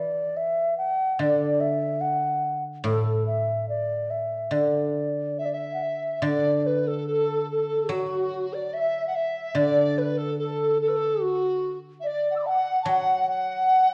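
Graceful and pastoral, this excerpt of Chinese traditional chamber music unfolds at an unhurried pace in a straight four-beat metre. A mellow, end-blown bamboo xiao carries the melody from the start, its pure, straight tone tongued and sitting up front with softened highs. Beneath it, a guzheng played with fingerpicks provides a low accompaniment whose notes ring out with a silvery edge. At 5.4 seconds a large dizi enters as a second line, its range reaching higher than the xiao's, its hollow, buzzing membrane tone shaped by vibrato and a crisp attack. The music moves into a new section at 6.2 seconds, all heard through a moderate recital hall reverb and the worn, warbling pitch drift of an old cassette tape with a dulled top end.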